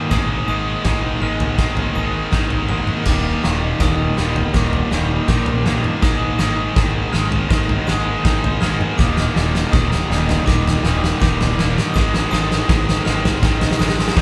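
A moderately roomy sound of a band playing together in one studio carries this cinematic, hopeful post-rock excerpt at 81 BPM, building for its full 14.2 seconds as a huge arena drum kit with a fat snare and punchy kick plays a fill up front beside a double-tracked, overdriven electric guitar riff. Beneath them, a growly picked electric bass sits in the background with a sparkling glockenspiel struck with brass mallets, while a twangy, clean electric guitar plays arpeggios very quietly and a dark, sul tasto string section holds soft-attack sustained chords. The harmony moves between Abadd9 and Ebmaj7 every few seconds.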